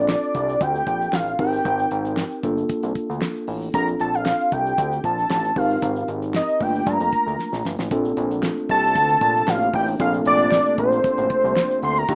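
Early-eighties boogie funk at 115 BPM in Bb major, danceable and smooth, where a fat, detuned sawtooth lead with ring modulation, vibrato, chorus and slapback echo sings up front over mellow tine electric piano, a thick, nasal filter-plucked analog bass, a damped 70s kit with tight kick, fat snare and handclaps, and a grainy tube shaker, with a drum fill at 7.4 seconds ushering in a soft, chorused pad on a Bbmaj9 at 7.9 seconds, all in a rough home-demo mix with light reverb and a small-speaker sound.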